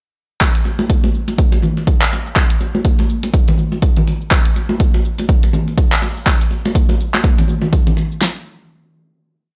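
A four-on-the-floor kick at 123 BPM drives this short house groove in 4/4, with a 58% swing on the sixteenths giving it a hypnotic, earthy sway. The electronic deep house kit sets a punchy kick and fat snare up front in studio reverb, with programmed closed hi-hat, shaker and handclaps sitting further back, while bright, band-limited acoustic congas with a vintage character add muted, high and low hand strokes. The groove runs from 0.4 seconds to 8.2 seconds, and a final hit then closes the whole piece.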